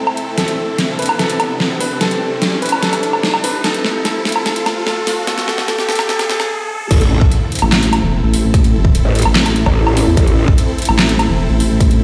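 This menacing, aggressive heavy wobble dubstep excerpt at 147 BPM in a half-time feel opens on a boxy grand piano melody with delay, over bright, sustained supersaw chords with sidechain pumping, a very quiet ethereal pad and a background riser, while an overdriven dubstep drum kit with metallic hats and a deep snare builds through a drum fill toward a brief stop at 6.5 seconds. At 6.9 seconds the drop lands on A minor with an impact, a punchy overdriven kick and an up-front growling bass, joined at 7.6 seconds by a nasal, dark vowel-sweep wobble bass with chorus as the supersaw chords carry on. A lush hall reverb and stone room ambience surround the sound, which comes across as played through a big sound system in a bare room.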